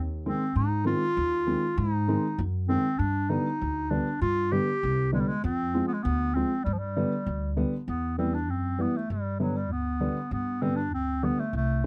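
A dry, close recording in a 1970s studio style places a clear, classically toned solo clarinet up front, carrying the melody in this festive yet soulful klezmer fragment in G phrygian dominant, moving at 98 BPM in a straight 2/4. Pizzicato upright bass with steel strings gives a warm, woody acoustic low end, while a dark, mellow upright piano enters at 0.3 s with an intimate, slightly detuned, woody character and audible action noise. The harmony moves from Ab to G and Fm before shifting to a new passage at 7.9 s built on Em and G.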